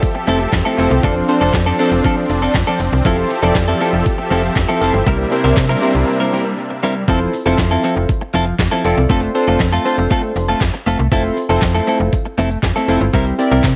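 Soaked in cassette-tape grit and a moderate spring reverb, this summery, upbeat dance-pop excerpt rides a smooth, produced R&B drum kit with a knocking kick, deep snare, metallic hats, handclaps and shaker, while a jingly tambourine sits in the background. A snappy, slap-like FM bass enters at 0.3 s with sidechain pumping, and an up-front, clean electric guitar riff with subtle chorus plays over glossy, chorused retro synth keys built from pulse and sawtooth tones with a filter sweep. Huge, lush supersaw chords, detuned and pumping, fill out the Fmaj7, Dm7/F and C7 changes until they drop out at 7.1 s, just after a brief break.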